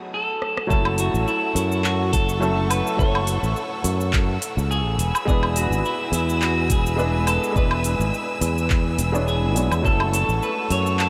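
A growly, punchy fretless electric bass sits up front, its tube-saturated tone rolling under this relaxed, warm slice of sunset chillout, cut from a longer piece in a gently swung four. The opening moment is a short break over a B9 chord, where a clean, twangy electric guitar carries the melody and an intimate baby grand piano, its action noise audible, plays the accompaniment, both passed through analog delay. A smooth R&B drum kit of cabasa, handclaps, metallic hi-hat, rim click and woodblock comes in with a fill at 0.4 seconds. At 0.7 seconds the bass, a knocking electronic kick and a rich, bowed studio string section with biting vibrato join as the harmony settles on F#m7, moves to E7 and returns to F#m7. The produced, tape-toned kick drops out at 10.0 seconds, and a huge ambient reverb soaks the whole dreamy mix.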